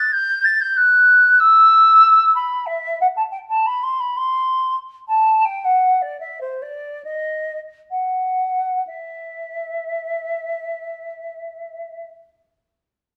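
This is a classical, baroque-style fantasia for unaccompanied flute in E minor, a short excerpt cut from a longer piece. The mood is solemn and grave, in 4/4 with a rubato feel, and the tempo moves between 59 and 94 BPM, slowing from 1.4 to 8.9 seconds. A silver concert flute plays alone from the start until 12.1 seconds, ranging from C5 up to A6. Its tone is mellow and hollow, pure and metallic, with a crisp attack and vibrato. At 8.9 seconds the music moves into a new section. The flute is set in a wet stone room with a reverb of 0.9 seconds, heard from further back in the space, which lends the line a distant quality.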